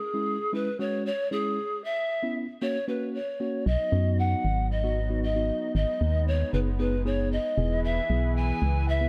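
An airy pan flute with a bamboo tone opens this confident, energetic pop excerpt, carrying the melody from the first moment with a soft chiff and expressive vibrato. A clean, mellow tine electric piano joins almost at once as accompaniment, moving through E6/G#, C#m7 and F# at a straight 115 BPM in 4/4. At 3.7 seconds the harmony shifts to B, G#m and E, and two new parts arrive together. One is a smooth, detuned analog pad with a subtle warbling chorus and a long release. The other is a hollow, organ-like FM bass with a dark, percussive attack that sits up front in the mix. Light reverb gives the whole a gentle sense of space.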